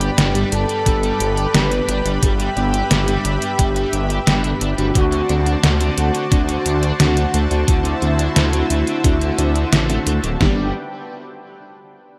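Uplifting and nostalgic, this synthwave excerpt moves at 88 BPM in G major, with a smooth, dark portamento lead singing the melody over a bright, slow-blooming unison pad and a thick detuned saw bass, both breathing with sidechain pumping. A crunchy, double-tracked overdriven guitar plays a riff, dreamy FM electric piano stabs with tremolo sit in the background, and two overdriven 8-bit drum machine parts with gated reverb drive the beat up front, the thumpy kick arriving at 0.9 s. The harmony shifts from G to D7 at 5.0 s, all framed by a moderate plate reverb and a bright 1980s-style digital production.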